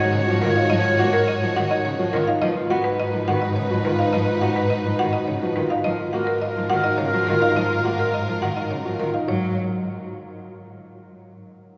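Pulsing at 105 BPM in a straight 3/4, this hypnotic, urgent excerpt of minimalist classical pattern music sits in G# dorian over a held G# pedal, with chords shifting from D#m7/G# to B/G# and F#maj7/G# before landing on G#7(no3) at 9.3 seconds. A buzzing marimba struck with hard mallets carries the melody, its woody, dry, band-limited tone sounding percussive and vintage against the rest of the ensemble. A soft-attacked, distant clarinet traces a second line alongside it, while a grand piano spins arpeggios in the middle register. A lush, smooth violin section holds sustained chords with vibrato, and a single bowed cello adds expressive accompaniment with vibrato and portamento, entering at 0.1 seconds. Underneath, a dark bowed double bass anchors the low G#, and the whole performance is bathed in a cathedral-like reverb with a long 6.0-second tail, as if captured in a church or concert hall.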